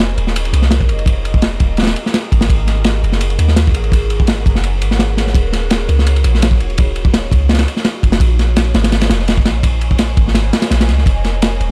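Drum and bass with jungle roots at 168 BPM in F phrygian, this atmospheric, nostalgic excerpt pairs a crunchy, saturated breakbeat kit of punchy kick, medium-tuned snare and dark ride cymbal with a deep, boomy 808-style bass of sine tone and a noise layer, both up front in a dry, gritty recording with small room reverb and a lightly swung sixteenth-note feel.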